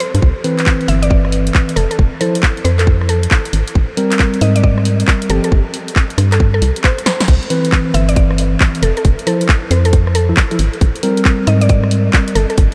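An up-front, hollow, organ-like FM bass anchors this bouncy, soulful two-step UK garage cut alongside a tight, layered electronic kick, a punchy tape-warmed analog drum machine with snare, handclaps, rim clicks, hi-hat and crash, mellow tine electric piano stabs trailed by diffuse delay, and a woody, detuned mallet-like synth pluck melody shimmering with chorus, all bathed in a dreamy, reverb-soaked mix where a drum fill at 7.1 seconds leads into the drop at 7.3 seconds.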